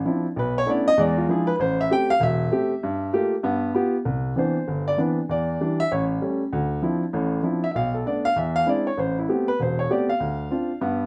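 Sophisticated and warm, this brief jazz cut from a longer piece swings briskly in 4/4 with a lilting, uneven eighth-note feel. A baby grand piano carries the whole recording on its own from 0.1 to 11.1 seconds, sounding natural and up front, its range stretching from deep bass notes to the upper middle of the keyboard. The opening stretch unfolds as an unaccompanied passage of rich extended harmonies, moving through minor elevenths, altered dominants and ninth chords before settling at 4.1 seconds into a brighter major-ninth sound. From there the harmony keeps turning through a chain of seventh and ninth chords, including a half-diminished and an augmented colour, before resting on a minor seventh near the close. A moderate studio reverb gives the instrument a gentle sense of room while keeping it close and intimate.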